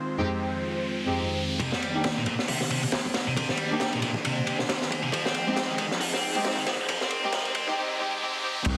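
An energetic, swaggering breakbeat excerpt at 136 BPM in 4/4, with a 57% swing on the sixteenths, cut from a longer piece and moving from Fm7 to Cm9 and back to Fm7. It opens on a swirling, detuned sawtooth pad treated with phaser, chorus, 12-bit sampler grit and sidechain pumping, while a very quiet electronic riser climbs through the first 1.6 seconds and rich, earthy chamber strings place bowed stabs through low-pass filtering and dub echo. At 1.6 seconds the build-up begins: a crunchy, up-front breakbeat kit with a punchy kick, high-tuned snare and dark cymbals drops in alongside a bright, double-tracked high-gain guitar riff. Through this build-up, filter sweeps run over the guitar, strings and pad, and the guitar also carries tube saturation and dub echo. A deep, thick saturated sub bass note on C2 arrives only at 8.7 seconds, just before the end. A moderate plate reverb gives the mix some space, and the dense, heavily limited master is dusted with vinyl crackle.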